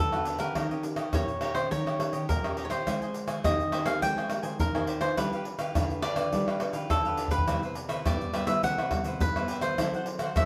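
Bittersweet yet lively, this short excerpt of samba and choro pairs a crisp, picked cavaquinho melody with a second, equally picked cavaquinho accompaniment, while a dark, fingerpicked nylon-string guitar in classical style adds accompaniment and audible finger squeak. A tube shaker, pandeiro, tamborim and tight surdo drive the groove, with a drum fill at 6.9 s. The harmony moves from Gmaj7 through Eb7, Abmaj9, G7 and Cmaj7 to F#m7b5, all in a moderate studio reverb.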